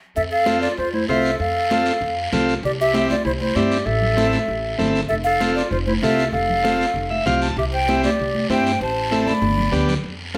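A breathy concert flute carries the melody in this joyful, danceable cumbia, its straight, soft-edged tone close-miked and a little unsteady. A clear clarinet plays a jazz-inflected second line beneath it, with light vibrato and scooped notes. A woody, dark upright bass is plucked under congas with a bright, thin skin, set back in the mix, and a raspy guiro that sounds distant. A vintage, buzzy combo organ enters at 0.5 seconds and sits up front in the accompaniment, breaking into a short fill at 7.0 seconds. The harmony moves through F, Cadd9 and Am before turning to G near the end, and a large studio reverb adds room around this passage, cut from a longer piece.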